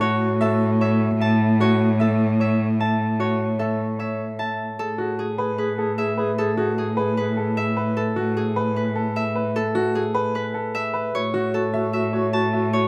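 Propulsive and bright, this minimalist classical pattern music moves at 151 BPM in A major, with a ringing, fingerpicked Celtic harp carrying the melody up front while a clear baby grand piano spins intimate arpeggios, its action noise audible and its notes given long sustain. A rich, bowed cello holds a steady A2 bass with vibrato and a smooth top, and a mellow, distant clarinet adds a second line in brief phrases, returning at 4.8 and 11.1 seconds as the harmony shifts from F#m/A to Amaj9 and back. The close, detailed sound carries little reverb, and the passage is cut from a longer piece.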